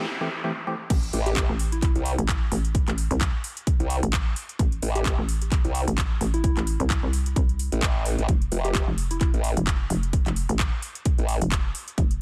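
A digital ambience surrounds this gritty, swaggering bass house passage, cut from a longer piece and driven by a swung sixteenth-note feel. It opens on a short break where a dark, wave-folded organ stab with chorus, phaser and delay sits over an electronic noise sweep, before the drop lands at 0.9 seconds. From there a punchy, layered electronic kick stands up front beside a house kit of handclaps, crash cymbal and metallic hi-hats, both re-recorded in a small room. Two basses carry the groove: a hollow, bouncy FM bass with tube saturation and sidechain pumping, and a wobbling formant-sweep bass built from pulse and sine waves, compressed, overdriven and chorused. A round, gentle keys-like lead with vibrato and delay sits in the background, appearing briefly early on and again through the middle, and the harmony shifts to an F chord at 8.3 seconds.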